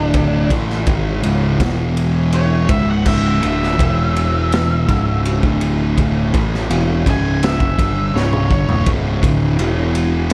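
An octave-fuzz lead guitar solo with analog delay opens this brooding, heavy stoner and doom metal excerpt, riding over two thick fuzz guitars riffing darkly in the background, a bright, growling overdriven bass and a raw, boomy, saturated garage drum kit set up front in a small, pumping room, whose fill from 8.1 to 8.9 seconds closes the solo and leaves the riff, bass and drums under light reverb.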